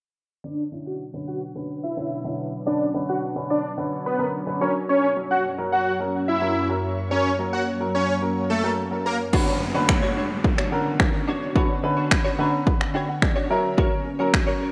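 A rough home-demo mix sits in a lush hall reverb, giving this driving, energetic dance-pop cut a spacious glow. From 0.4 s, huge, detuned supersaw chords carry the melody up front, pumping against a sidechain, run through a low-pass filter and trailed by tape echo. Beneath them, a worn baby grand piano plays accompaniment through the same pumping and filtering while a filter sweep runs across the opening stretch. An ethereal, airy pad joins with slow-attack sustained chords, shimmering through chorus, phaser and its own reverb. At 9.3 s the supersaws give way and a house drum kit arrives up front, with a punchy overdriven kick, finger snaps and crash cymbal, alongside a clean, compressed electric guitar riff recorded direct and a downlifter in the background. The piano adds a fill from 12.1 s as the harmony moves between Bmadd9 and F# chords.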